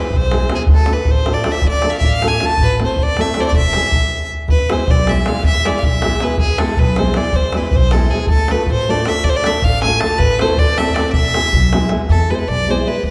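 Balkan folk in the wedding-band style, bittersweet and virtuosic, this excerpt cut from a longer piece moves in a straight 5/8 at 316 BPM in eighths in E phrygian dominant, with a clear, focused bowed fiddle carrying the melody up front with light vibrato, a thumb-plucked classical nylon-string guitar with fresh strings giving accompaniment, a woody pizzicato upright bass on steel strings holding the low end, and a tight, compressed, saturated davul keeping the beat until 12.0 s, set in a wet concert-hall reverb, with a brief stop from 4.0 to 4.5 s before the opening theme repeats over E, Dm and Am chords and a short new section arrives at 12.1 s.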